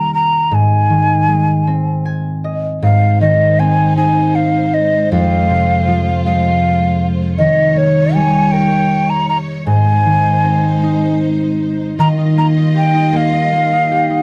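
Close, detailed microphones and little reverb give this short lullaby for children an intimate, dry sound that feels gentle and sleepy in 6/8. A concert harp, fingerpicked and ringing, plays the accompaniment from the start, with a brief fill between 1.7 and 2.8 seconds. Up front alongside it, a jazz flute carries the melody with a hollow, airy tone, a crisp chiff on each attack, vibrato and rolled-off highs. At 2.8 seconds a symphonic string section enters quietly underneath, bowed and lush with a smooth top, holding sustained chords well beneath the flute and harp in level. The harmony moves gently from Eb to Ab, Fm, Eb7 and back to Ab before settling on an Ebadd9 as a new section begins near the end of this cut from a longer piece.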